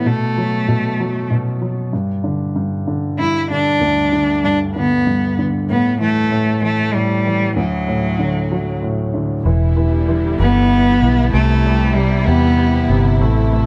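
A tender, heartfelt six-eight pop ballad in G major at a slow 64 BPM, cut from a longer piece, where a rich, smooth bowed cello with vibrato carries the melody over a short-sustained baby grand piano accompaniment in a small room, until at 9.4 seconds a lush, woody string section and a round, punchy foam-muted electric bass join as the harmony moves through Em7 to Cmaj7.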